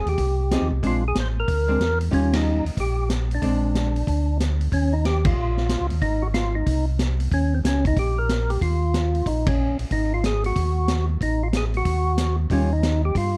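Swinging at 185 BPM in 4/4, this greasy soul jazz organ trio fragment sets a fat, lightly overdriven tonewheel organ melody, with third-harmonic percussion and plate reverb, over a round, key-clicking organ bass, both turning through slow rotary speakers, while a vintage drum kit with a punchy kick, high-tuned snare and dark cymbals drives underneath, a clean, picked hollow-body archtop guitar comps from 0.5 to 3.9 seconds, and band accents punctuate the warm, lightly reverberant production.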